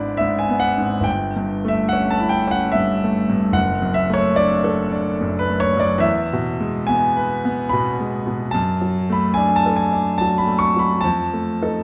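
Classical romantic nocturne for solo grand piano, dreamy and tender, unfolding in a rubato 3/4 at around 72 BPM with uneven beats, its clear, natural, up-front tone spanning a broad range from deep bass to bright treble as it drifts through E7/G#, A7/G, D/F# and E before settling toward an F7 near 11.1 seconds, all within a dark, warm production bathed in a wet recital-hall reverb, in a brief passage cut from a longer piece.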